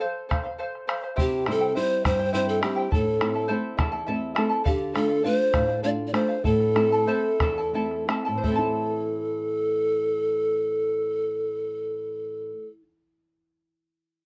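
A breathy, wooden pan flute carries the melody from the start over the shimmering, fingerpicked double strings of a bright charango, soon joined by a round, up-front bombo and, at 1.2 seconds, a dark, thumb-plucked flamenco guitar that adds a fill near 3.8 seconds, giving this melancholic yet festive Andean folk excerpt in A minor, in 6/8 at around 56-69 BPM, a modest studio ambience as the tempo slows from 4.7 seconds.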